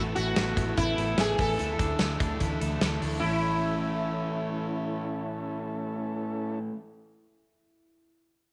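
A straight 4/4 pulse drives this short, youthful and bright cut of jangly indie pop, with a big, punchy rock drum kit up front from 0.2 seconds until it stops at 3.1 seconds, over a dark, foam-muted fingered bass. A clean, twangy twelve-string electric guitar picks arpeggios with slapback echo, alongside a raw overdriven garage guitar treated with spring reverb and a reedy combo organ with heavy vibrato tucked in the background, as the harmony moves from Asus2 to Dsus2 before settling on A. Up front, a mellow, buzzing sitar carries the melody, its sympathetic strings shimmering through slapback echo in a small, lightly reverberant room.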